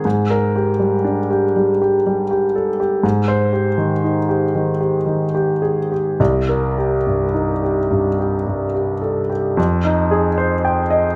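A clear, intimate concert grand opens alone on a Gm/Ab chord and drifts through Abmaj7, Cm7 and Fm9 in a hazy, mysterious impressionist solo piece in C minor, played with rubato in a slow 3/4 around 51-63 BPM, its deep bass, long sustain and audible action noise sitting up front in a moderate recital hall reverb, with a new section arriving at 9.6 seconds before the cut at 11.2 seconds.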